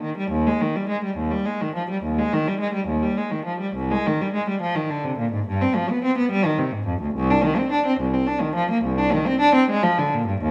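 A single bowed cello plays alone from 0.0 to 10.5 s in this solemn, introspective baroque-style suite movement, moving freely in 12/8 at about 70 BPM in dotted quarters with a rubato feel. The period-style playing has a rich, reedy gut-string tone with light vibrato, ranging from C2 to D4 and tuned to A4 = 439 Hz. A reverberant recital hall with a 1.4-second decay surrounds the instrument in this fragment cut from a longer piece.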